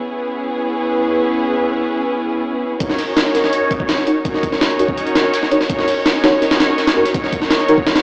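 A straight 4/4 jungle and drum and bass pulse at 166 BPM kicks in at 2.8 seconds. A gritty, pitched-up sampler-style breakbeat kit with a thumpy kick and high-tuned snare arrives up front, alongside a very quiet, saturated acoustic break of hi-hat, shaker and snare. Together they join a bowed string section that has held low-pass-filtered sustained chords in Eb phrygian from the start, with vibrato and a smooth top, now under a filter sweep as this nostalgic, frenetic fragment builds. From 3.3 seconds a dark, detuned chord stab with chorus and dub echo sits in the background. The harmony moves from Dbm7 to Ebm7 inside a lush hall reverb and stone-room ambience, like a big sound system in a bare room heard through an AM radio.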